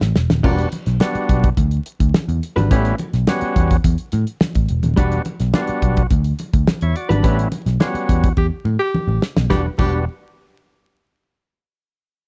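A drum fill on a damped 1970s kit opens this cool, sly funk excerpt at 106 BPM, its tight kick, medium-tuned snare and dark cymbals sitting up front beside a round, foam-muted picked electric bass. From 0.4 seconds a clean, compressed hollow-body jazz guitar adds accompaniment, while a gritty, overdriven tonewheel organ with key click and vibrato plays stabs. Low-tuned congas with a thick skin add a very quiet layer of percussion in a live room. The band moves between Em9 and A9 in E dorian over a straight 4/4, and a band accent and a second drum fill arrive near the close. There a tenor saxophone enters at 8.4 seconds on a single G4 as a second line, up front, with light vibrato and a smooth top, all set in a dry, close 1970s-style studio sound with vinyl crackle.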